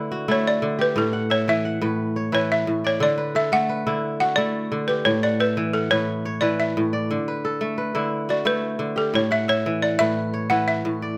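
Hypnotic and warm, this excerpt of West African traditional music moves at 117 BPM in a straight 12/8, circling between D and A in D major. A bright, ringing, fingerpicked kora plays crisp arpeggios from A2 to F#5 throughout, while a woody, buzzing balafon struck with hard rubber mallets enters at 0.3 seconds to carry a full, dry solo melody between A4 and F#5 until 10.8 seconds. Both instruments sit up front under close, detailed microphones, framed by a moderate recital-hall reverb.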